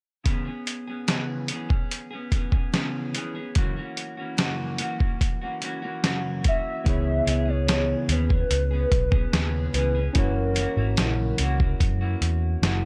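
This hazy, wistful slice of indie and bedroom pop moves at an unhurried, straight pace, cut from a longer piece. A dark, clean semi-hollow electric guitar opens the frame, its picked chords of C#m7 and F#7 wrapped in lush chorus and a warbly pitch drift. Alongside it comes a dusty, sampler-style drum kit, gritty and overdriven with a thumpy kick, medium-tuned snare and hi-hat, sounding re-recorded in a small room and sitting up front. Around 6.5 seconds a warbling, nostalgic lead enters, a detuned blend of triangle and sawtooth with tremolo, analog chorus and slapback echo, mellow and sustained. Just after, a bright, barky tine electric piano lightly overdriven through a combo amp with a cassette-tape tint joins, along with a round, punchy, foam-muted electric bass that lands at 6.9 seconds, dark and amped. A digital ambience surrounds the whole mix, giving the track a soft, faded glow.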